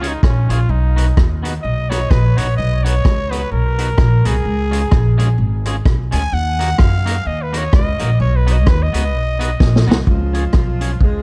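A swung, upbeat ska groove at 128 BPM in Db mixolydian carries a cheerful mood, with a vintage drum kit of punchy kick, rim click, snare and hi-hat up front beside a woody pizzicato upright bass, while a twangy, clean picked electric guitar accompanies a raspy, growling trumpet solo with dub echo until a drum fill at 9.6 seconds hands the melody at 10.1 seconds to a distant, octave-doubled dark horn section, all in a dry, warm production cut from a longer piece.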